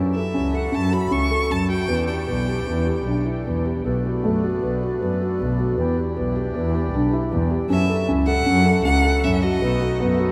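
Contemporary chamber music in an uneven 5/4 meter, urgent yet pensive, heard in a brief cut from a longer piece set in a vast, echoing space. A reedy, breathing harmonium holds sustained chords beneath a felt-muted upright piano playing mellow, intimate arpeggios, while an up-front bowed double bass adds a dark, expressive line with vibrato and portamento. A clear, focused bowed violin carries the melody from 0.1 to 3.2 seconds and returns at 7.7 seconds, over chords moving through F#m7, Em7 and Bm7 before closing on B7.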